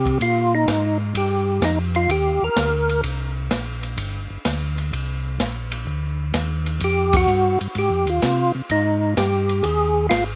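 A bluesy, smoky soul jazz organ trio swings at 127 BPM in C minor, opening on Cm9 with a fat, percussive tonewheel organ melody carrying key click, chorus vibrato, slow rotary speaker and slapback echo from 0.0 to 3.0 seconds and returning at 6.8 seconds over Fm9, while a round, dark tonewheel organ bass on slow rotary sits up front beneath an acoustic jazz kit of dark cymbals, medium-tuned snare and boomy kick, the band striking an accent at 7.0 seconds in this dry, roomless cut from a longer piece.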